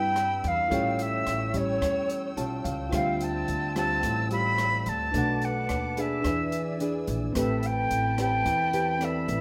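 An intimate, wistful bossa nova fragment cut from a longer piece opens on an airy, up-front jazz flute melody with vibrato and a crisp chiff, over fingerpicked nylon-string guitar with audible finger squeak, a woody pizzicato upright bass, veiled con sordino strings holding lush sustained chords, and a bell-like tine electric piano sitting in the background. An open jazz drum kit joins at 0.2 seconds with hi-hat, rim click and a boomy kick, and the electric piano adds a brief fill at 2.1 seconds. The harmony moves from Cmaj7 through A7b13, Dm11, Bm7 and E7 to settle on Am9, all softened by a light reverb.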